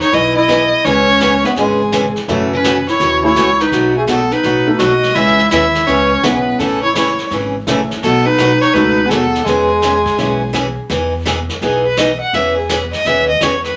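A clear, focused fiddle leads this down-home, playful western swing cut in E major at 167 BPM, its light vibrato up front over a breathy, whispered clarinet second line that drops out at 10.8 s, just before the fiddle takes a solo from 10.9 s to the end at 13.8 s. Beneath them a bright, boxy parlour guitar is picked, a dark upright piano sits in the background, a woody pizzicato upright bass thumps, and a vintage brush kit with a punchy kick keeps the swung 4/4. The whole band sits in a wet club reverb, moving through jazzy seventh chords from Emaj7 to C#m7, F#m7 and B7.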